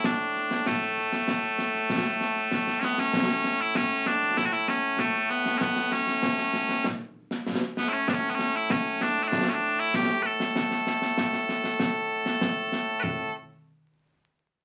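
Piercing, continuous bagpipes carry the melody from the first moment, standing solo and up front as they range from A2 to B4 in a proud, ceremonial Scottish pipe tune in A major. Beneath them, an acoustic kit of concert snare drum, concert bass drum and concert toms marks a straight 4/4 pulse at 97 BPM, with a small-room character and a somewhat quieter place in the balance. A short closing passage begins at 13.0 seconds, and within it the drums fall away at 13.2 seconds while the pipes sound on briefly until 13.3 seconds. The whole recording carries the crackle and aged grain of a very old 78 rpm record, wrapped in a wet club reverb. Cut from a longer piece, this fragment moves through a brief opening passage into a longer central stretch that begins at 3.1 seconds.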